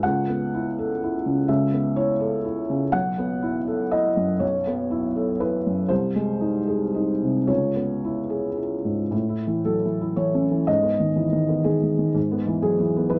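A felt-muted upright piano plays alone throughout this short cut from a longer neoclassical minimalist piece, its soft, boxy tone sitting intimate and up front. The mood is reflective and melancholic, moving in 3/4 at roughly 109 to 127 BPM with a rubato feel that lets the pulse breathe. The harmony drifts from Aadd9/C# through B7sus4 and G#/B# to C#m7, then a new passage from 9.1 seconds moves through A and G#m before resting on Eadd9/G#. The part ranges from B1 up to F#5, giving the mellow felt sound both a deep low register and a gentle upper line. A moderate studio reverb adds a little space, and the dark production keeps the top end subdued, so the piano stays close and hushed.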